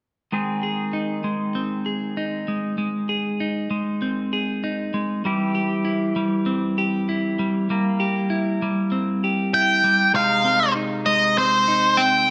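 A straight 4/4 pulse at 98 BPM carries this hopeful, euphoric rock excerpt in Ab major. Twangy, picked clean electric guitar arpeggios with slapback echo sit up front over sustained pedal steel chords, whose slide tone is dressed in lush chorus, all set in a wet scoring-stage reverb. At 9.5 seconds a dark, fuzzed octave lead guitar melody with distortion and slapback echo breaks in, just before the harmony moves from C back to Ab at 10.2 seconds.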